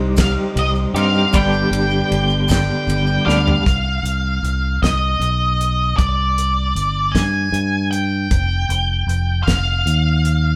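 Recorded live in one room with a moderate stone-room reverb, this trippy, mysterious psychedelic rock excerpt in 6/8 opens with a background tonewheel organ holding lightly overdriven chords through a slow rotary speaker and a clean, compressed twelve-string electric guitar riff with tremolo, both of which stop at 3.6 seconds as a drum fill leads into the next section, while a round fingered electric bass, a dark octave-fuzz lead guitar melody and a dry 70s drum kit with a fat snare and tight kick carry on, with grainy, mellow maracas tucked behind until 3.2 seconds.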